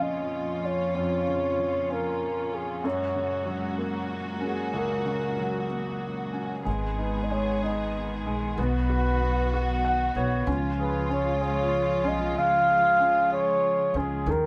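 Melancholic and dramatic, this six-eight pop ballad moves at a slow 63 BPM in dotted quarters, with a straight feel. A dark, breathy flugelhorn carries the melody, its soft attack, light vibrato and scooped notes giving it a whispered, jazz-style intimacy. A concert grand piano accompanies with deep bass, long sustain and audible action noise, while a studio string section holds bowed, sul tasto chords with vibrato for a close ensemble sound. A woody, pizzicato upright bass joins at 6.7 s as the harmony moves from Bbm/F and Gbadd9 toward Abm, B and Db, and the piano adds a brief fill at 9.5 s. The group sounds as though it is playing live in one room, bathed in a wet reverb.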